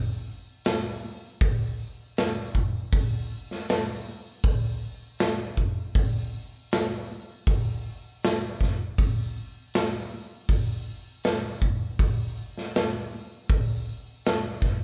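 Rock excerpt with a driving, swaggering feel in straight 4/4, built on a big acoustic rock drum kit that enters at 0.6 seconds and sits up front with a punchy kick, medium-tuned snare and hi-hat, captured in a studio room with light reverb like a band playing live.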